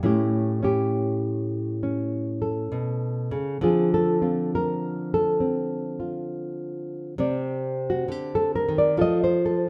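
A nylon-string guitar plays alone from the first moment, thumb-plucked and sitting up front with a dark, full-bodied classical tone that ranges from A2 to Eb5. This short solo jazz excerpt swings at 67 BPM in 4/4, its sophisticated harmony moving from A7 to Dm7, then Cmadd9, before landing on F at 9.0 seconds. A moderate stone-room reverb gives the guitar a live, resonant space, as if heard in the same room as the player.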